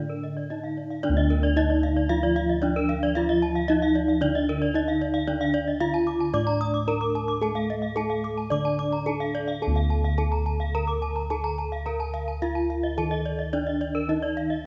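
A bronze metallophone carries the melody up front, struck with a wooden mallet and heard close and dry with a full, ringing body, its paired tuning producing shimmering beats. This hypnotic, brilliant Balinese gamelan passage moves at 110 BPM in a straight 4/4 in D pelog, tuned to A4 = 439 Hz, and is cut from a longer piece. Bossed gongs anchor the bass, also up front, with a round, dark, smooth tone. Two higher metallophones spin arpeggios throughout: one is played with a wooden mallet and also heard close-miked and dry, and the other is played with a horn mallet for a bright, airy sparkle. A lower metallophone adds a mellow, soft accompaniment with padded disc mallets; it drops out at 9.6 seconds as the final section begins and returns briefly at 14.1 seconds. A moderate recital hall reverb gives the bronze a sense of space.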